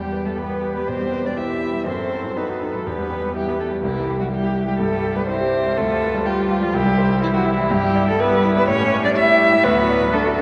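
At a quick 123 BPM in 4/4, played with a flexible rubato, this graceful, spirited classical-period piano quartet excerpt in E minor moves through a harmonic passage from Em toward a closing D chord. Up front, a con sordino violin carries the veiled melody with vibrato and portamento, while a distant muted cello sings a dark second line and a background viola adds soft accompaniment. A natural-sounding concert grand with deep bass fills out the harmony, all set in the long, wet reverb of a cathedral-like hall.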